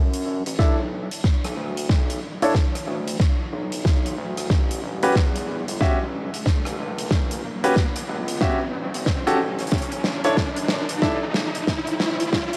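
Swung sixteenths push this glitch hop excerpt along in a loping 4/4, giving it a gritty, playful bounce that builds from start to finish. An up-front, punchy electronic kick drops in at 0.6 seconds, layered with a huge arena drum kit whose hi-hat, rim click and medium-tuned snare ring through a pumping hall sound while a drum fill runs the whole length. Underneath, an aggressive synth bass blends square, sawtooth and sine tones with oscillator sync, its saturated, evolving growl shaped by tube saturation and a high-pass filter. Brilliant concert grand piano stabs, polished and present, play from 0.6 to 11.2 seconds, pumping with sidechain compression and trailing tape echo as a low-pass filter sweeps across them. A riser sits in the background throughout as the chords move from Bm7 to A7 and on to Bm11. The mix has light reverb, a small-room ambience and a cassette-tape tint.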